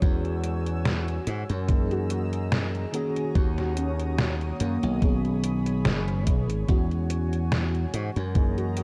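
Vaporwave at 72 BPM in a woozy, dreamy 4/4 with a light 16th-note swing, this short fragment cut from a longer piece sets a velvety, detuned sawtooth synth lead with chorus, vibrato and tape echo in the background over a lush FM electric piano with a soft pad layer, an airy unison pad holding sustained chords, a glassy, punchy slap bass and a thumpy, tape-warm kick and fat-snared 8-bit drum machine up front, all moving through E69, F#13, D#m7 and B69 in a dark production with light reverb.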